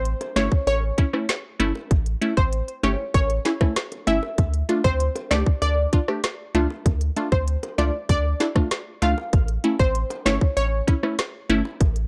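Dancehall at 97 BPM in D harmonic minor, this sultry, tough excerpt sets a punchy, deep sine sub bass and an electronic island pop drum kit with tight kick, woody snare and smooth hats against crisp, wave-folded wavetable chord stabs, while a round sawtooth analog pluck melody with chorus and analog delay rides on top, high-tuned bongos sit in the background, and the whole dry, gritty hardware recording moves from A to Dm at 4.4 seconds and back to A at 9.3 seconds.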